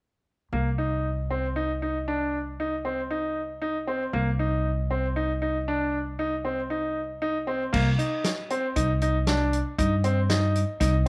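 A brilliant, up-front grand piano arpeggiates over a woody pizzicato upright bass on a C minor chord from 0.5 s, setting up a tense, driving progressive instrumental in 7/4 at 117 BPM, until a vintage acoustic drum kit with dark cymbals, a medium-tuned snare and a punchy kick enters at 7.7 s, all within a moderate spring reverb and small room ambience in this excerpt from a longer piece.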